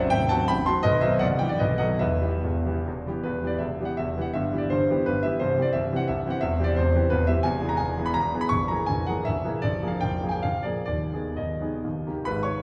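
Dotted rhythms in 3/4 drive this nostalgic, wistful romantic classical dance for solo concert grand piano, played with free rubato: the piano sounds clear and smooth with a deep bass, a vintage tint and short sustain, and it sits up front while a wet recital-hall reverb carries it from further back in the room, with a brief opening phrase giving way at 3.3 seconds to a longer second passage in this fragment of a larger piece.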